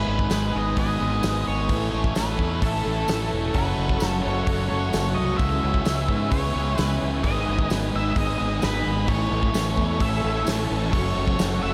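Wistful, blissful shoegaze and dream pop rock at 130 BPM in A lydian, where a dark octave-fuzz lead guitar carries the melody through diffuse ambient delay over a thick fuzz guitar riff and a biting overdriven riff with reverse reverb, a growling fingered bass sits up front, a very quiet twangy clean guitar plays compressed arpeggios, a detuned sawtooth pad swells with resonant sustained chords in the background, and a distant jingly tambourine joins a loose indie drum kit with a fat snare in a dreamy, reverb-soaked mix moving through G#m, Amaj7, F#m and C#m7.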